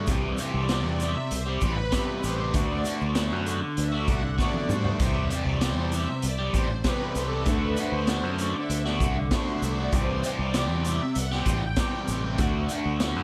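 A crunchy, double-tracked guitar riff with a phaser opens this trippy, hazy psychedelic rock excerpt, sitting up front alongside a growling fingered electric bass whose bright, amped tone is pushed into overdrive. A raw garage drum kit enters at 0.1 seconds with a punchy kick, a high-tuned snare, hi-hat, splash cymbal and toms, its gritty, saturated sound pumping in a small room with a rolled-off top, while a grainy egg shaker sits very quietly and close. From 0.4 seconds a vintage string machine of violins takes the solo role with shimmering sawtooth chords, soft in attack and thickened by ensemble chorus. The harmony alternates between C and D in a straight 4/4 feel, and the drums play a fill at 4.4 seconds. Light studio reverb gives the mix a gentle sense of space.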